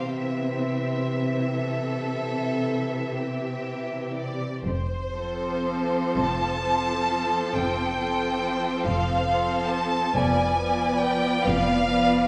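Bathed in a wet scoring-stage reverb, this serene, lyrical excerpt from a slow, rubato romantic movement for string orchestra in 12/8 sets a rich, smooth first violin melody up front over a focused second violin line, expressive soft-attack violas and lush cellos, all bowed with vibrato, while clear double basses join at 4.7 s and the harmony turns to a diminished chord at 10.2 s.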